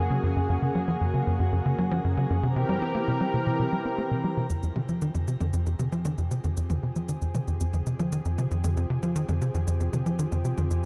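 A straight 4/4 pulse is driven by a tight, punchy sequencer bass riff with a sawtooth filter pluck, treated with analog chorus and tape echo, while electronic toms and cabasa join at 4.5 s with their own tape echo in this expansive, mysterious stretch of ambient space music. Above them, a thick, airy unison pad of detuned sawtooth and square waves with a noise layer holds sustained chords through chorus and shimmer reverb, fading in from 4.5 s as the harmony moves from Gb through C7 to Fmadd9. The dark production sits in a moderate plate reverb, in a passage cut from a longer piece.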